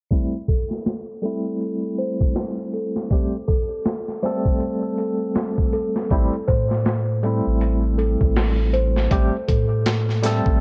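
A dark, smoky trip hop excerpt opens at 0.1 s with a gritty, sampler-style boom bap kit, pitched down and compressed, its thumpy kick and high-tuned snare overdriven and re-recorded in a large room, set up front under a swung sixteenth-note feel. Alongside it, a barky tine electric piano plays accompaniment on a single Am7 chord, bright and lightly overdriven through a combo amp, with tremolo, tape echo and a filter sweep running through the whole passage. At 0.5 s a celesta joins with delicate, bell-like arpeggios from soft felt hammers, sweet and mellow, sitting lowest in the mix and also carrying tape echo and its own filter sweep. At 6.1 s a soft dub sub bass arrives up front, deep and round with a fast attack and sustained tube-saturated tone. The whole mix sits in light reverb and digital ambience behind an overall low-pass filter and filter sweep, giving it a hazy, late-night character.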